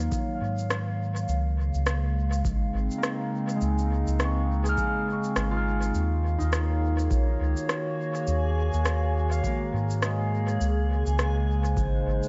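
A gently swung sixteenth-note feel in 4/4 carries this meditative, hazy piece of ambient dub, cut from a longer work. A deep analog electronic kick and an overdriven electronic cabasa with rim click, both re-recorded in a small room, hold the groove, with dub echo trailing the cabasa and rim. Underneath, a soft, round sub bass sits up front, while a warbling, lo-fi tape-like pad holds dark, nostalgic chords through chorus and its own reverb, moving between Ebm7 and Dbmaj7. A thumb-plucked concert harp rings out arpeggios through a filter sweep that spans the whole passage, with tape echo on its notes. At 7.1 seconds a reversed, detuned granular texture enters, dreamy and swelling, and the mix sits in light reverb with a muted top end.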